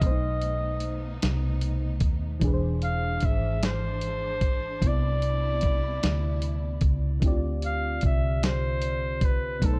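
Late-night and sultry, this slow six-eight R&B piece moves at 50 BPM in D dorian, with a straight feel and a dark, warm production carrying little reverb. A clear flugelhorn takes the melody in a jazz style, its scooped notes giving it a vintage, solo voice above the band. Beneath it, a mellow FM electric piano supplies accompaniment with a soft, round, warbling tone, a faint noise layer and a chorus effect, while a studio string section holds sustained bowed chords with vibrato, portamento and a smooth top until it drops out at 7.2 seconds. Up front, a foam-muted fingered electric bass sounds dark and amped, alongside a gritty, compressed sampler-style soul kit with a thumpy kick, a medium-tuned snare and hi-hat. The harmony passes through B7b9, E7b13 and Cmaj9 before settling on Dm7 at 7.2 seconds, where the opening section repeats in this short cut from a longer piece.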